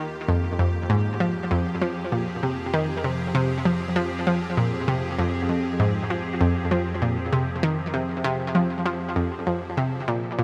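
Ambient, sequencer-driven space music in F minor, this brief 10.4-second excerpt from a longer piece moves at 98 BPM in a straight 4/4 with an expansive, cosmic mood. An up-front analog pluck carries the riff between F2 and F3, its round, detuned sawtooth and square tones edged with a noise layer and a fast, filtered attack that decays quickly, then thickened by chorus and tape echo. Beneath it, an evolving wavetable pad fades in over the full length, holding sustained chords from Eb3 to Ab4 with morphing, sine-based shimmer, slow attack and long release, wrapped in ensemble chorus and its own reverb. Deep in the background, an analog drone sits between Eb2 and F2, its pulse-width-modulated sawtooth and pulse waves slowly shifting under chorus. An F minor chord arrives at 0.3 seconds, and the whole sits in a light reverb with a digital ambience.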